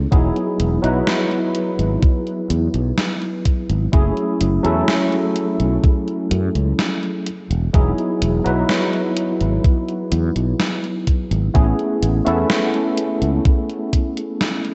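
A barky tine electric piano, clean and washed in analog chorus and tape echo, opens this faded, dreamy vaporwave excerpt alongside a growly, sustaining fretless bass, while a thumpy sampled kick and a gritty, gated 80s drum machine with hi-hat and gated-reverb snare join at 0.1 seconds, all drifting through Emaj9, F#m9 and Amaj7 chords in a plate-reverb-soaked mix with a dulled, muffled top end.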